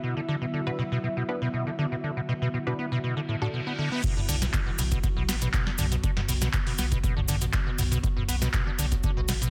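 A nostalgic, warbling tape-like pad, an airy, breathy pad and a squelchy, resonant acid bass riff with overdrive and tape echo open this driving, hypnotic acid house excerpt in B minor at 120 BPM, joined by muted, detuned dub chord stabs with phaser and echo, before a very quiet reverse cymbal at 3.3 seconds leads into the drop at 4.0 seconds, where a deep electronic kick, a booming analog drum machine with crisp snare, metallic hats, handclaps, toms and crash, a grainy cabasa in the background and a round sine sub bass from 4.3 seconds drive the dense, heavily limited mix under pumping sidechain.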